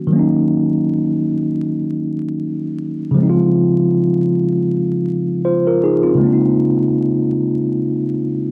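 A mellow tine electric piano plays solo from 0.0 to 8.5 s in this short, nostalgic hip hop excerpt, sitting up front with a clean tone heard through its built-in speakers and softened by a low-pass filter. At a relaxed 79 BPM in 4/4 with a light swing on the sixteenths, it moves in Eb dorian from Ebm7 to Dbmaj7 at 3.2 s and settles on Bbm11/Db at 6.2 s. A wet plate reverb, a dark production and a bed of vinyl crackle give the reflective mood a hazy, lived-in feel.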